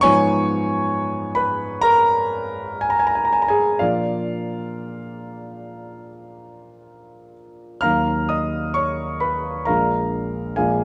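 Freely pushed and pulled in a rubato 4/4, this stormy, bittersweet romantic character piece for solo piano is a short cut from a longer work, lasting about 10.8 seconds. The grand piano sits up front with a warm, polished, present tone and long sustain, ranging from deep Bb1 to a high F6 as the harmony moves from a half-diminished Fm7b5 over Ab to Bb, then Eb minor, and finally a Bb7. A moderate large-studio reverb and a dark overall production give the instrument a shadowed, roomy glow.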